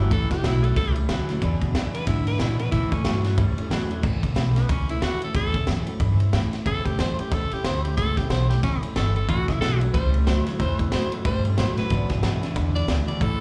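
Rollicking and retro, this rockabilly cut from a longer piece swings at 183 BPM in A mixolydian, heard as a live gig through the venue's PA with a touch of club reverb. A raspy tenor saxophone carries the melody as a solo across the whole 13.4 seconds, its bright, gritty tone marked by scooped notes and light vibrato, trailed by tape echo. Beneath it, an upright bass thumps out woody pizzicato lines on gut strings, while a raw garage drum kit sits up front with a high-tuned snare, boomy kick, crash and ride, all saturated and rolled off at the top. A twangy electric guitar through a small old amp plays a slightly broken-up riff with slapback echo, dropping out at 4.0 seconds and returning at 9.3. A full-bodied, picked dreadnought acoustic guitar, also with slapback, picks along in the background as the chords move between A and E7.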